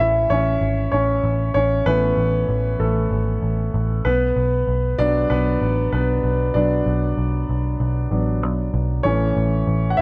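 A clear, natural concert grand piano with a deep low end sits up front, carrying this anthemic, uplifting piano-driven pop excerpt over A and Bm chords, while a dark, round, foam-muted vintage picked electric bass adds an amped undertone and a moderate plate reverb lends a sense of space.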